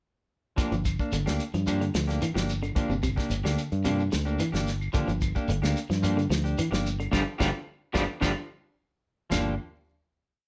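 A studio sound with moderate reverb frames this short, complete afrobeat piece, driving and funky at 110 BPM in a straight 4/4, rooted on a G minor seventh chord in G dorian. The fingered electric bass sits up front with a dark, round tone, playing a syncopated riff low in the range, while a soul drum kit with a tight kick, medium-tuned snare, toms, hi-hat and dark ride cymbal lays down an afro groove in a pumping room. An electric guitar at the edge of break-up repeats a twangy, fingered arpeggio ostinato in the low register, and a clean electric guitar adds picked, rhythmic stabs in upper chord shapes. A grainy gourd shekere shakes along in a small room, and woody claves tap a five-stroke time line from 0.9 seconds, distant in the background. The band hits a unified accent from 7.1 to 9.3 seconds before the groove resolves into a final chord that rings out to the close.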